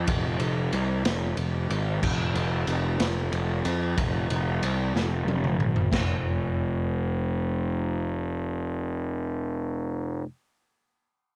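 A slow 6/8 pulse at 62 beats per minute, counted in dotted quarters with a straight feel, drives this dark, trippy psychedelic rock fragment in F minor, tuned to A4 = 435 Hz. A picked electric bass carries the low end from F1 to F2, its overdriven fuzz tone round and punchy, sitting up front from the opening to the final moment at 10.2 s. A raw garage drum kit joins at 0.1 s, its small, pumping room giving the acoustic kit a gritty, saturated character, with a punchy kick, a medium-tuned snare, toms, and dark china, crash and ride cymbals under a rolled-off top. The drums play a fill from 5.0 s, and a new section begins at 5.9 s, just before the kit stops at 6.1 s and leaves the fuzz bass alone. The sound is dry and close, with little reverb, so both parts feel immediate.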